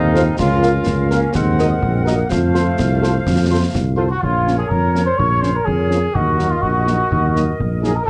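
A light-reverb recording of a resolute, martial wind-band march in Bb minor at 125 BPM, cut from a longer piece, where a mellow, distant trumpet section carries the melody up front over a punchy tuba bass, a smooth-topped French horn section in the background, woodwinds with vibrato and a soft attack and a clear, very quiet euphonium that drops out with the roomy trombone chords at 3.9 seconds, while close, dry snare, dark clash cymbals and bass drum with gritty sampler texture drive the 2/4 beat from Bbm/Db through Ebm and F into a second section at 4.2 seconds.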